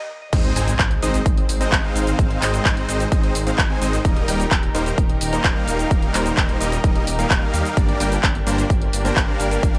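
A lightly reverberant mix with a filtered low end opens this festival progressive house excerpt, which bursts from a brief break into an uplifting, triumphant drop at 0.3 seconds, driving at 129 BPM in a straight 4/4 over chords moving from Ab to Eb to Gm. Huge detuned supersaw chords carry the riff with delay, a thick, mellow detuned saw bass holds the low end with chorus, and a lush slow-attack pad with chorus sits in the background, all three pumping against the punchy, up-front electronic kick. A pop drum kit adds crash, handclaps, shaker and bright hats, while a very quiet electronic impact marks the drop until 2.2 seconds.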